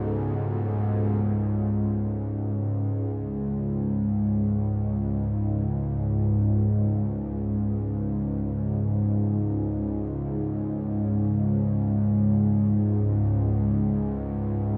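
Ominous and vast, this dark ambient drone unfolds in free time, cut from a longer piece. A sweeping resonant pad opens in the background with a bright, detuned sawtooth chord of Aadd9, its chorus-treated, evolving tone ending at 1.2 seconds. The bowed-like drone, sounding from the very start, carries on until 14.8 seconds, sitting up front in a low register from C#2 to G#2 and settling on a C#5 power chord. Its string-like, tense timbre blends sawtooth and triangle layers with a noise layer, ring modulation and vibrato, giving the sustained tone a gritty, unsettled edge. A huge ambient reverb with a long decay surrounds the sound, deepening the sense of cavernous space.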